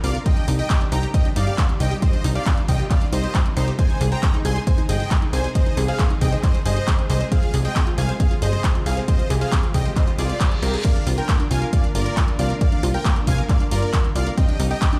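Uplifting trance with a soaring, euphoric mood, cut from a longer piece and moving in a straight four-four pulse. A punchy analog kick sits up front from 0.3 seconds, alongside an overdriven, layered techno kit of crash cymbal, handclaps and hi-hat, while a funky, decaying bass made from sawtooth, pulse and triangle waves with ring modulation pumps with sidechain. Huge, detuned supersaw chords carry a bright, sustained melody high above with sidechain pumping and delay, and a lush unison pluck with a noise layer and filter sweep runs arpeggios in the background through tape echo. Beneath them, a very quiet, distant studio string section holds smooth, bowed chords with vibrato. The harmony moves through Cmadd9, Ab, Fm and Bb, and a brief electronic reverse cymbal at 10.5 seconds arrives just before the Bb chord at 10.8 seconds, with the whole mix sounding as if played on a big sound system in a bare stone room.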